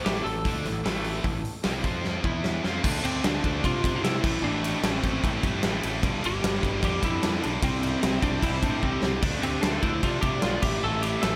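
A huge arena drum kit sits up front with a punchy kick, fat snare and bright cymbals, driving this heavy hard rock excerpt in A minor at 150 BPM and breaking into fills at 2.0 and 8.8 seconds. A twangy, compressed, slightly broken-up lead guitar with slapback echo carries the melody over a thick wall of three picked riff guitars (one scooped and high-gain, one high-gain with echo sitting in the background, and a very quiet double-tracked one) and a fuzzy, overdriven fingered bass, moving through Dm, Am, G and C. At 8.4 seconds a lo-fi second lead through a small cranked amp joins in the background, all in a small room with light reverb.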